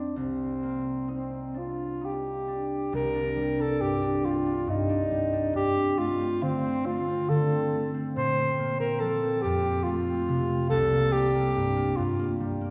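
The rhythm drifts in a rubato 6/8, with the dotted-quarter pulse hovering around 43-48 BPM and the phrases stretching freely. This is a hazy, mysterious impressionist classical duo in C dorian, cut from a longer piece. The clear alto saxophone sings the melody up front in a classical style, moving between C4 and C5, while the concert harp accompanies with fingerpicked, ringing tones from the low C2 up to Eb4. The harmony wanders from Cm9 through Gsus24, Bbadd9, F and C5 before settling toward Gm, with a brief opening passage giving way to a longer second section at 2.9 seconds. A lush concert hall reverb places the listener further back in the room, so the lingering decay adds to the dreamy, suspended atmosphere, and the saxophone drops out at 12.4 seconds just before the harp's final resonance.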